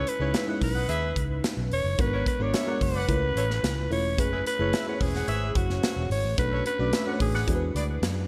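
A raspy, gritty alto saxophone carries the melody up front in this glossy, breezy 1980s jazz-funk pop excerpt at 109 BPM, joined by a smooth horn section playing a second line with delay. An FM electric piano with a soft pad layer adds dreamy accompaniment through lush chorus, while a dark, round muted electric bass and a modern studio kit, with punchy kick and gated reverb, underpin the C#m9 to E9 progression. The bright digital production sits in a lush hall reverb.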